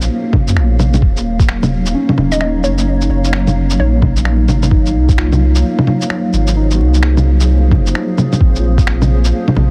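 Dense, heavily limited and dry, with a bed of vinyl crackle, this rainy, wistful future garage excerpt moves at 130 BPM in a swung 4/4 in Eb dorian, drifting from Gbmaj9#11 through Ebm9 and Ab13 to Bb9. A muffled, tape-warm kit of sampler-style shaker, bongos and finger snaps sits up front in a small room, with soft clipping on the snare, while a pitched-down, thumpy kick joins at 0.3 seconds. Round sine sub bass, a cloudy, evolving granular pad and dark, muted felt-like keys with chorus and analog delay all pump against the sidechain, and a hollow, bouncy square pluck flickers in the background from 2.3 to 4.2 seconds.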